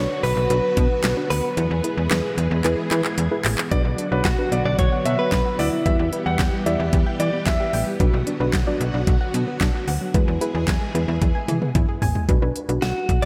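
A bright, clean electric guitar melody with delay and slapback echo opens this nocturnal, melancholic synth-pop piece alongside a dark, detuned pluck, a lush vintage string machine and a snappy, metallic FM slap bass, with a knocking, fat-snared electronic drum kit arriving at 0.2 seconds and a clear, intimate grand piano line and mellow background pluck arpeggios joining at 3.7 seconds, the whole mix set in a big, arena-like hall.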